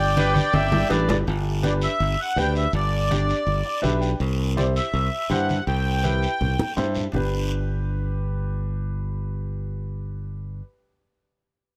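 A straight 4/4 cumbia groove at 164 BPM in G major carries this joyful, danceable fragment from a longer piece, where a growly, up-front electric bass and a woody, brilliant upright piano run through to 10.6 seconds, a sweet, reedy accordion with light tremolo tuning sings the melody until 6.7 seconds, a punchy, clear trumpet adds a brief scooped second line, ringing cowbell and timbales appear only at the opening, soft-handed low-tuned congas and a raspy guiro keep time until 7.2 seconds, drum fills mark the transitions, a short piano fill sits near 3.5 seconds, and light reverb surrounds the parts as the chords move from G to C and back.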